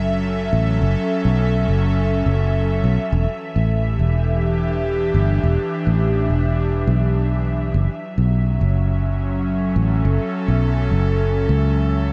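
Ambient dub with a spacious, meditative mood, cut from a longer piece and moving in a straight 4/4. An airy, breathy pad holds sustained chords throughout the 12.1 seconds, its vintage tone built from triangle and sawtooth waves with a noise layer, and it blooms slowly with a gentle warble from chorus. Beneath it, a fingered electric bass sits up front with a dark, round, foam-muted sound that feels direct and amped. The harmony drifts from F#m7 to Em7 at 3.1 seconds and returns to F#m7 at 7.7 seconds, giving the passage a hovering, suspended quality. A light reverb adds a soft sense of space around the two parts.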